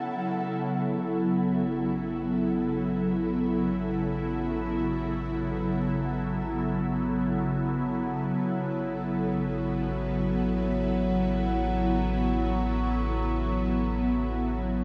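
Melancholic and reflective, this free-time ambient piece opens on an ethereal, airy pad of detuned sawtooth and triangle voices with a noise layer, held up front through ensemble chorus, phaser and shimmer reverb, while a soft-mallet vibraphone rings metallic in the background with tape echo until 0.5 s. A round sine sub bass fades in on A1 under an A6 chord, and at 5.0 s a resonant drone with moving overtones joins on F#3, carried by chorus and reverb. It all sits in a vast, echoing space with a huge reverb tail of 8.3 s.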